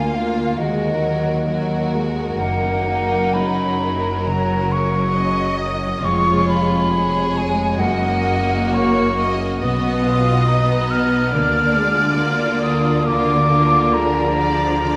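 Classical music for symphony orchestra, this is a slow, elegiac and solemn romantic movement at 67 BPM in 4/4, played with rubato so the beats stretch and give. A lush, expressive violin section carries the melody with vibrato and a soft attack, while a focused chamber violin section and an airy, distant flute both play second lines, the flute sitting highest and most prominent in the balance. A clear, distant viola section supplies accompaniment, and a mellow, ringing harp spreads fingerpicked arpeggios in the background. Underneath, a biting, intense double bass section and a smooth, even cello section hold the bass. The harmony moves through chords such as Ebm, Gb, Db7/F and Bmaj7, and a wet concert hall reverb gives the whole ensemble a spacious, lingering resonance in this passage cut from a longer piece.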